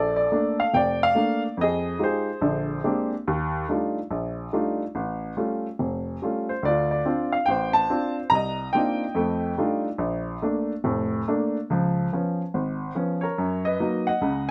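Playful and swinging, this short solo jazz excerpt features a baby grand piano that sounds intimate and up front, its action noise audible beneath the notes as it ranges from deep bass to the upper treble. The harmony moves through rich extended and altered chords, from Bbmaj7 and Ebmaj9#11 through Aaug7 and F13, before a shift at 13.4 seconds lands on F#6 as the piece breaks off at 14.5 seconds. Light reverb gives the close, present piano a touch of room.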